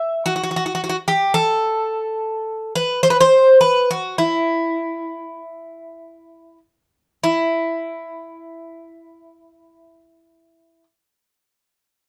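A solo acoustic bouzouki, picked up front with metallic double strings and some octave-doubled courses, plays a melancholic, reflective Greek folk passage in 9/8 that slows down over its first 7.2 seconds before moving into a new section and falling silent at 10.8 seconds, all set in a dark production with moderate studio reverb.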